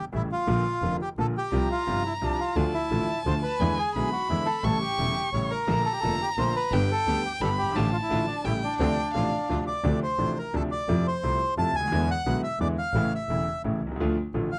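A dry, close 1970s-style studio sound frames this dramatic, passionate tango fragment in D minor at 174 BPM in a rubato 3/4, where a dark, reedy bandoneon carries the melody up front over a brilliant, deep-bottomed concert grand piano and a bowed, gut-string double bass, while a nasal, expressive solo violin with vibrato and portamento adds a second line from 1.5 to 9.5 seconds and a distant, biting symphonic string section plays very quiet stabs from 5.7 seconds.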